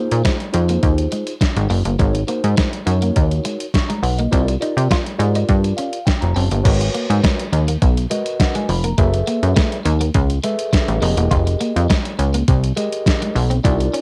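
Funky and slick, this early-eighties boogie funk cut moves at 103 BPM in a straight 4/4, with a punchy, plucky analog bass, sawtooth-edged and ring-modulated with a fast attack and transformer saturation, sitting up front beside a crisp 8-bit drum machine whose thumpy kick and fat snare were re-recorded in a large room. A mellow, clean tine electric piano heard through its built-in speakers comps over suspended ninth chords before shifting to minor eleventh harmony at 6.7 seconds, just after its own fill from 5.5 seconds. A compressed, picked electric guitar at the edge of break-up plays a riff through analog chorus, and the whole dry home cassette recording carries a lo-fi tape character.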